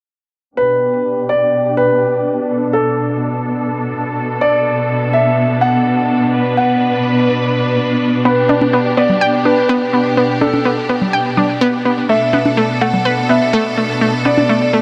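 Progressive house at 125 BPM, emotional and dreamy, cut from a longer piece: a dark, mellow concert grand piano carries the melody with tape echo while a lush, bowed studio string section holds sustained chords through a low-pass filter and a filter sweep, moving between G/B and Bm7. At 8.3 seconds a round, warbling analog pluck enters with bright sawtooth arpeggios, chorus and tape echo, sitting up front, and congas with an electronic, tape-warm tone join at 8.5 seconds. The whole sits in light reverb.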